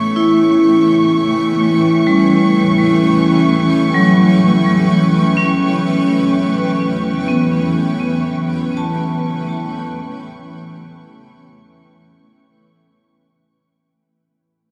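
Ambient in free time with a serene mood, this excerpt opens on an A9 chord from an up-front, cloudy, detuned granular pad holding sustained chords in its own reverb, while a bright vibraphone with its motor off rings out metallic hard-mallet arpeggios through tape echo and a lush, bowed violin section adds a smooth, vibrato-rich texture on a high C#6, all set in a dark, warm production within a vast cathedral reverb and fading out from 3.7 s to the end at 13.9 s.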